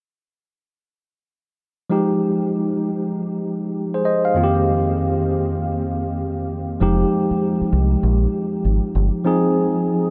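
A 98 BPM swung 4/4 groove in F minor sets up this slick, punchy R&B fragment, where a clean, up-front tine electric piano plays accompaniment through its built-in speakers from 1.9 to 10.1 seconds over Fm9, Cm7/F and Ab6/F chords, joined from 6.8 to 9.1 seconds by a dark, round, amped deep dub fingered electric bass, all within a dreamy mix soaked in a huge ambient reverb.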